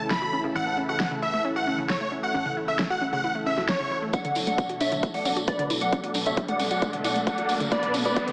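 Euphoric, uplifting trance at 134 BPM in D major, where a huge, detuned supersaw lead carries the melody up front beside a bright, catchy plucky unison lead, over a thick, warbling pad, a lush pluck arpeggio and a tight sequencer bass in the background, with a big-room kit of huge snare and metallic hats. The synths and bass all pump under sidechain, with dub echo trailing the two leads and the pluck. At 4.1 seconds the bass drops out as a punchy overdriven kick and a distant, jingly tambourine enter, the arpeggio takes a filter sweep, and a riser joins at 5.9 seconds to build, all heard through a heavily compressed, small-speaker radio sound with light reverb.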